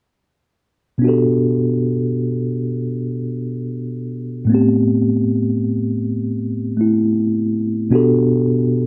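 Melancholic and wistful, this short jazz fragment is cut from a longer piece and moves with a relaxed swing in 4/4. A mellow tine electric piano carries the accompaniment alone from 1.0 to 8.9 seconds, spanning A2 to A4. Its tone is clean and heard through its built-in speakers, sitting up front in the mix. The harmony moves from Gmaj9/B to Am7 and settles on a rootless Em11/B at 7.9 seconds, tuned slightly below standard pitch at A4 = 439 Hz. A light digital ambience touches the instrument, while the overall sound stays dry and close, like a 1970s studio recording.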